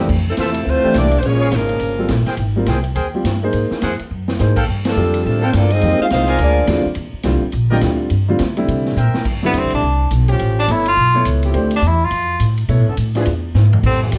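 A joyful big band swing cut opens with tight trumpet stabs over intimate concert grand piano accompaniment, woody pizzicato upright bass with gut-string thump and a distant, roomy drum kit, while a bright saxophone section carries short melody phrases over a clear trombone second line; drum fills and a band accent lead to a change at 9.3 s, where a warm tenor saxophone with light vibrato and scooped notes takes a solo from 9.5 s against soft-attack trombone chords in the background, set in a dark, moderate club ambience.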